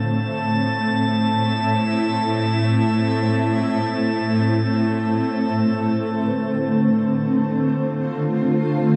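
A cloudy, full-bodied granular pad opens this free-time ambient fragment on an A minor chord, sitting up front in a vast, echoing cathedral space, while a distant, bowed cello section holds a low A in the background and a glassy, chorused texture of drifting overtones floats high above. Around 5.9 s the harmony moves to Dm7 as the cellos and glass harmonics fall away, and at 6.3 s muted, felt-like synth keys enter very quietly with soft, dark arpeggios. The mood stays peaceful and warm throughout.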